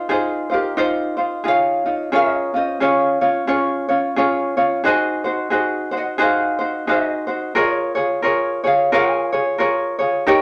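A fingerpicked acoustic ukulele opens this sunny, dreamy Hawaiian piece, cut from a longer work, laying down a gentle accompaniment on a Dbmaj9 chord. At 0.5 seconds a second fingerpicked ukulele joins with the melody, its bright, light tone placed up front and reaching from G4 to Ab5 before it ends at 10.0 seconds. The tempo is an easy 88 BPM in 4/4, with a relaxed swing on the eighth notes, and the tuning sits slightly under standard pitch at A4 = 439 Hz. The harmony drifts from Dbmaj9 through Dbadd9 and Ab7 to a closing Db6. A wet studio reverb adds a soft, airy glow around the two plucked strings.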